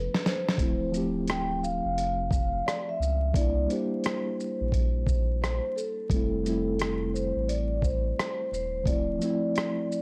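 A swung 16th-note groove at 87 BPM opens with a short drum fill, as a dusty soul sampler-style kit enters at 0.1 s with a thumpy kick, fat snare, hi-hat, rim click and shaker, all roughened by 12-bit sampler grit and a big-room sheen. Beneath it, a round sine sub bass holds the low end until 9.2 s, while a reedy electric piano with fast tremolo, cassette-tape softening and a low-pass filter comps through Dm7, C7, Fmaj7 and Dm9 in D minor. On top, a soft-mallet vibraphone plays a ringing, metallic melody with slow motor vibrato and analog delay, giving this hazy, melancholic lo-fi hip hop excerpt its glow over a layer of vinyl crackle.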